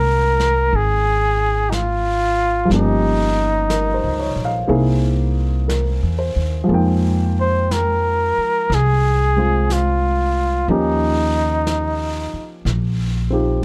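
A mellow, close-miked trumpet with soft attack, vibrato and scooped notes carries the melody in this late-night, romantic jazz ballad at 61 BPM with a gentle swing, backed by a warm baby grand piano, a woody, thumpy pizzicato upright bass up front, and an airy brushed drum kit entering at 0.4 seconds, moving through Db69, Gm7b5, C7alt, Fm11 and Eb9 in a dark production with light reverb, the trumpet stopping at 12.6 seconds in this brief cut from a longer piece.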